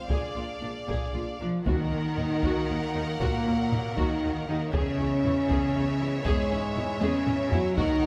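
Dark and heroic, this short cut from an epic orchestral film score moves at 78 BPM in a straight 6/8, built in Eb phrygian over chords of Bb7, Ebm and Dbm/Fb. A distant, lush violin section carries the vibrato-laden melody above a smooth second violin line, while warm French horns sustain chords over a background viola section, a rich cello section and a clear, distant double bass section, all driven by a taiko ensemble struck with heavy sticks in a live room. At 1.7 s a vintage-toned trombone section joins the sustained chords and close, dry timpani sound briefly, and a drum fill arrives from 7.0 to 7.8 s, all set in a moderate scoring-stage reverb.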